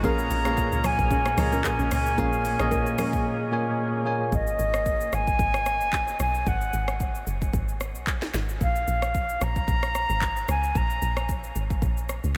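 A late-night, hypnotic amapiano groove with a gentle swing, taken from a longer piece and bathed in a dreamy, reverb-soaked mix. The opening drop layers a bright, bell-like tine electric piano, a vintage woodwind section holding sustained chords with vibrato and sidechain pumping in the background, and soft, detuned chord stabs colored by chorus, phaser and delay, while very quiet congas and bongos add hard-handed accents. A silent gap arrives at 3.3 seconds, and by 4.3 seconds the keys, woodwinds and stabs have dropped out, leaving the second section to the rhythm section and melody. Up front, a round, dark log drum bass with a fast, decaying attack anchors the low end beside an electronic afro-pop kit of deep kick, sharp snare, metallic hats, handclaps, rim clicks and shaker. Floating above it all, an airy silver concert flute sings a straight-toned, crisply attacked line with delay, sounding distant despite sitting at the front, and carries on until 11.3 seconds.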